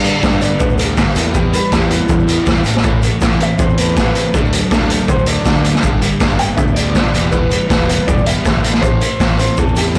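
A straight 4/4 pulse comes from a raw garage drum kit, which sits up front with a boomy kick, a medium-tuned snare and hi-hat in a small room, its sound gritty and rolled off at the top, while a grainy tube shaker adds a very quiet layer beneath it. This upbeat, jangly indie rock excerpt from a longer piece keeps all its parts going together across the full 10 seconds, cycling through G, Em, Am and D. A dark, clean mellow electric guitar, fingered and compressed, carries the melody from E4 to G5 with a slapback echo. Underneath, two guitars play riffs in the background: a fuzz guitar with warm distortion, and a bright overdriven guitar given lush chorus and its own slapback echo. A growling fingered electric bass with overdrive rounds out the low end, and the whole recording has a blown-out, overdriven character with light reverb.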